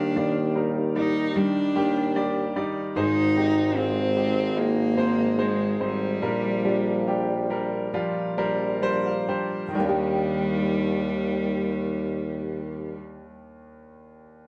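A bowed solo cello carries the melody up front with warm vibrato and a smooth top in this hopeful, emotional pop excerpt in Eb major, moving at 64-75 BPM in 4/4 and slowing down from 3.0 s to 9.8 s. A clear, polished concert grand piano accompanies with deep bass and adds a fill at 7.9 s, a dark, thumb-plucked nylon-string guitar plays arpeggios, and a punchy tuba with vibrato holds down the bass. The band plays live in a stone room with moderate reverb over Ebmaj7, Ab and Bb6 chords, and the piano rings on alone until 14.5 s.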